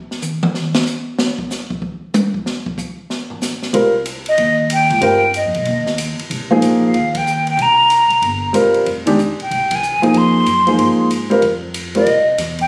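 Captured on a phone in a moderately reverberant studio room and compressed, this spiritual, searching modal jazz fragment in C minor swings at 187 BPM, opening with a drum solo on an open kit with a boomy kick and medium-tuned snare before a warm, up-front baby grand piano and woody pizzicato upright bass enter on Cm7 at 3.7 seconds, joined at 4.3 seconds by an airy, hollow silver flute melody with vibrato and a crisp attack, while band accents land at 7.1 and 9.7 seconds and the harmony moves to Fm11 at 8.9 seconds.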